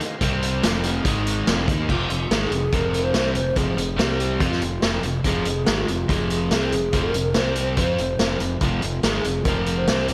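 A straight 4/4 pulse at 142 BPM drives this brooding, swaggering classic rock passage in F minor, cut from a longer piece. The vintage drum kit sits up front with a punchy kick, a medium-tuned snare, hi-hat and dark crash cymbal, its top end rolled off. A very quiet tonewheel organ holds bright, shouting chords with key click, chorus vibrato and a slow rotary speaker until 1.9 seconds. From 0.2 seconds two overdriven electric guitars play the riff, one compressed and the other sludgy and set in the background, over a growly fuzz bass. At 1.9 seconds a hollow alto flute takes the melody, airy with vibrato, a crisp attack and lifted highs. Lush hall reverb lends the recording a big arena sound as the harmony moves among C5, Fm and Ab5.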